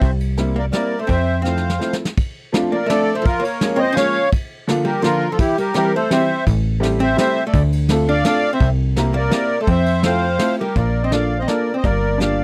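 A reedy, sweet accordion carries the melody from the first beat of this charming, whirling musette waltz, set in F major at 168 BPM in 3/4 and cut from a longer piece. Beneath it, a dark, clean archtop guitar picks a hollow-bodied second line, while a soft brush kit with dark cymbals, a medium-tuned snare and a punchy kick keeps the dance moving and plays a fill from 1.5 to 2.2 seconds. A punchy analog bass with a fast, decaying filter pluck sounds at the start, drops out at 1.8 seconds and returns at 6.5 seconds, and a bright, worn, slightly detuned upright piano fills in the accompaniment from 0.4 seconds. The harmony drifts through colors like Db6/F and Am7 before turning toward Bbmaj7 and Gm7 as a new section begins at 10.8 seconds. The sound is dry and close in a 1970s studio manner, with light reverb and the accordion's light tremolo tuning sitting up front.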